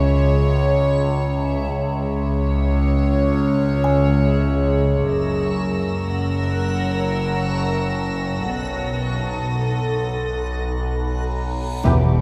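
This is a cinematic suspense film score cue in free time, uneasy and ominous, cut from a longer piece and moving through C#m, F# and B7. A warm symphonic violin section carries the floating, sul tasto melody over a dark, intimate double bass section and soft-attack cellos, while an overtone-sweeping drone with chorus sustains beneath it and a reversed, granular swelling texture holds sustained chords. A delicate, tinkling music box sounds in the background from 3.8 to 6.3 s, and at 5.1 s a chamber violin section joins high above with vibrato. At 11.7 s a huge, bright reverse cymbal leads into an impact, where taiko ensemble, timpani struck with hard mallets, a woody viola section, a brief second violin line and a cello riff arrive together. A mellow, distant French horn section adds sustained chords in the last moments, all set in a wet scoring stage reverb.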